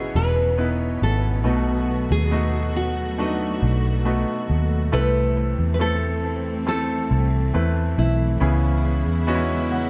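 Tender and emotional, this slow pop excerpt at 69 BPM sets a fingerpicked, full-bodied nylon-string guitar melody with tape echo over clear, polished grand piano accompaniment (also tape-echoed), veiled con sordino strings holding sustained chords, and a dark, round, foam-muted electric bass sitting up front, all moving through Emaj7, B7, Am/C and C#m7 in an echo-heavy chamber reverb before a piano fill at 9.3 seconds.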